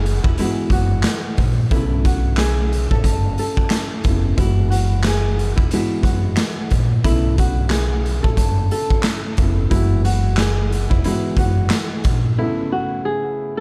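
A flamenco guitar, fingerpicked and filtered, opens this short boom-bap hip-hop cut over a dark upright piano with audible action noise, slightly detuned and softened by a cassette-tape tone, while the drums come in at 0.1 seconds. The mood is tough and moody, with a swung sixteenth-note feel and harmony that sways between two suspended ninth chords. The raw garage kit sits up front, its punchy kick, medium-tuned snare, hi-hat and handclaps saturated and gritty in a bright, pumping stone room. Beneath it, a woody pizzicato upright bass with steel strings holds the low end. The guitar's melody carries a tape echo, and the piano's long sustain gives the accompaniment a mellow, intimate, vintage character. At 12.4 seconds the bass drops out for a brief break, leaving guitar and piano ringing to the end of this fragment of a longer piece, all set in light reverb with a faint mains hum.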